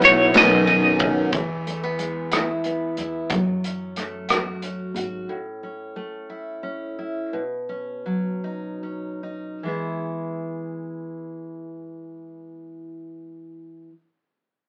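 A bright, twangy twelve-string electric guitar with tremolo opens this swaying, heartfelt six-eight pop ballad excerpt in E major at 47-61 BPM, sounding briefly alongside a fat, lightly overdriven percussive tonewheel organ through a slow rotary speaker, while woody pizzicato upright bass and a polished modern drum kit with bright cymbals drop out by 5.3 s, the tempo slows until 9.7 s, and a full-bodied picked steel-string acoustic guitar carries on alone to 13.9 s, the mix colored by a rough rehearsal-room sound with tube saturation, an AM radio tone and a short, wet small-room reverb.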